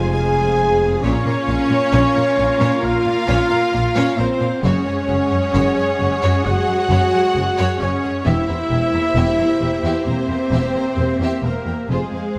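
Mellow French horns hold sustained chords in this relentless, heroic stretch of epic orchestral film score, entering at 0.1 s over rich, even cellos and double basses bowed with vibrato on the bass. A clear, intense violin section carries the melody from a distant position, while a focused second violin line with a smooth top, light-vibrato violas and a rich, smooth full string section fill in behind, and punchy, roomy trumpets add stabs in the background. The harmony moves from Fm through Bbm and Gbsus2 to C7/E under a moderate scoring stage reverb, and a huge, dark cymbal swell barely surfaces at 11.9 s.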